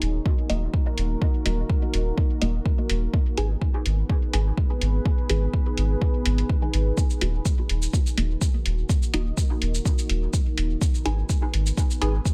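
A nocturnal, cavernous dub techno excerpt in Eb minor at 125 BPM opens with a dark, detuned sawtooth pad carrying chorus and its own reverb, muted, mellow chord stabs under a filter sweep with phaser and dub echo, a round, soft sub bass up front, and a muffled, overdriven hi-hat and cabasa, before a deep, layered electronic kick arrives at 0.3 s; the pad, stabs and bass pump against it as the chords move between Ebm and Abm in a dry mix.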